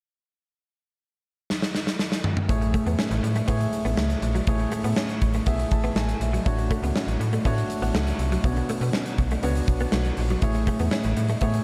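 A dark, warm production with light small-room reverb frames this glossy, uplifting 1980s-style pop excerpt in A major, moving at 121 BPM in a straight 4/4. A huge arena drum kit opens with a fill at 1.5 s, its punchy kick, medium-tuned snare, hi-hat and toms sitting up front in a pumping hall ambience. At 2.5 s the band settles onto Amaj7, then moves through Dmaj7/A and Bmadd9 before returning to Amaj7. A concert grand piano carries the accompaniment with an intimate, polished tone, audible action noise, deep bass and long sustain, and it adds a fill at 5.5 s. Beneath it, a slap-like FM bass gives snappy, metallic, digital attacks that decay, while a clean, picked, direct-recorded electric guitar plays a compressed riff in the background, coloured by ensemble chorus and tape echo.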